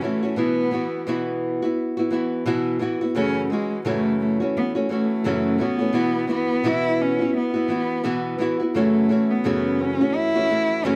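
Pop instrumental with a carefree, sunny mood, moving at 86 BPM in 4/4 with a gentle 60% swing on the sixteenths. A single bowed cello carries the melody between G#3 and E4, its vibrato and focused, smooth-topped tone sitting up front. Beneath it, a fingerpicked nylon-string guitar with fresh strings supplies a small, warm accompaniment spanning F#2 to F#4, also placed close to the listener. Both parts play throughout the 11-second excerpt, which alternates between Bsus4 and F#m7 chords. Light reverb adds a touch of space around the intimate duo.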